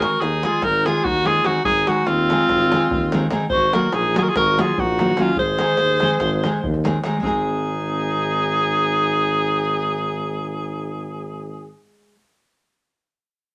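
From the opening moment, an edgy, punchy alto saxophone with vibrato leads up front in this wild, virtuosic Balkan wedding-band excerpt at 290 BPM in 9/8 and Ab mixolydian, while a clear, soft-attacked clarinet traces a classical second line in the background, a warm, fingerpicked nylon-string guitar adds accompaniment with audible finger squeak, a mellow tuba holds the bass with light vibrato, and a deep davul drives the rhythm until 7.4 seconds, the guitar ringing on alone to 12.2 seconds inside a wet studio reverb.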